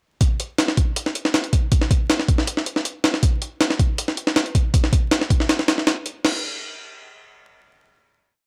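A dry hardware recording with vinyl crackle frames this short, dark and atmospheric drum and bass piece at 159 BPM in straight 4/4, carried by a jungle sampler-style kit of crash cymbal, hi-hat, thumpy kick and high-tuned snare: compressed, pitched up, gritty and tape-warm, sitting up front as a heavily chopped breakbeat through the drop from 0.2 s before a final hit closes the piece from 6.2 s to 7.8 s.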